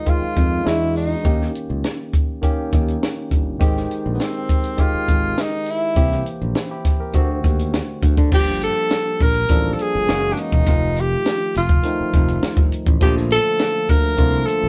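A breathy tenor saxophone takes the solo melody from the start, mellow and up front with light vibrato and scooped notes, over a barky tine electric piano lightly overdriven through a combo amp, in this lush 1970s-style soul excerpt at 102 BPM in Ab major. A compact cocktail drum kit with dark cymbals, a high-tuned snare and a punchy kick joins at 0.1 seconds, and a bright, growly fingered electric bass follows at 0.2 seconds. The smooth, warm feel carries through a chord change at 8.3 seconds, with the band sounding live together in one room under light reverb.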